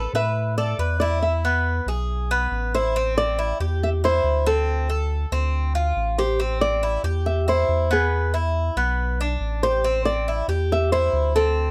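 Opening together, a fingerpicked nylon-string guitar with audible finger squeak carries the melody while a bright, metallic Cuban tres picks double-strung arpeggios over a deep, round dub sub bass in this short, danceable Cuban son and guajira excerpt at 139 BPM in A minor, moving from Asus2 and E into a cycle of Am7, Dm7 and E5 under light reverb.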